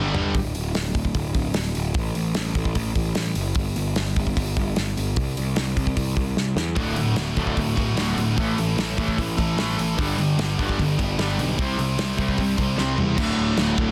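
Punk rock at 150 BPM in D major, energetic and upbeat, with a straight 4/4 drive in this short cut from a longer piece. A loose indie drum kit from a small room sits up front with a tight kick and medium-tuned snare, working crash, hi-hat and toms, and drum fills mark 0.0, 6.4 and 12.8 seconds. After a brief opening stab from the guitars, the growly, fuzz-laden picked bass carries the low end alone with the drums over an unharmonised stretch. At 6.8 seconds three overdriven guitars return with riffs: a biting, double-tracked part, a crunchy one in the background, and a sludgy, dark one behind it. They ride a D, A, G, C progression before landing back on D at 13.2 seconds. The mix is dry and dense, with a heavily limited modern master.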